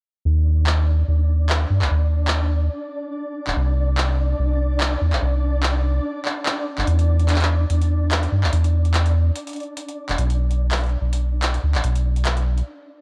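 IDM at 145 BPM in 4/4, with a light swing on the sixteenths, this melancholic, cerebral piece is cut from a longer work and runs as one continuous section. A round analog bass enters at 0.3 seconds and sits up front, deep and dark, its detuned sawtooth, sine and triangle tones evolving under a fast attack and sustained notes between Eb1 and G2. A flickering, grainy texture follows at 0.6 seconds, a granular, detuned triangle layer with slow attack, long release and built-in reverb, hovering quietly between D4 and D5. A booming analog drum machine arrives at 0.7 seconds with handclaps and metallic hi-hats, tape-warm and re-recorded in a small room. The harmony moves from a chordless opening to E7(no3) and then Bm, before everything halts for a brief stop at the end. The sound is dry and gritty, with the hardware character of cassette tape.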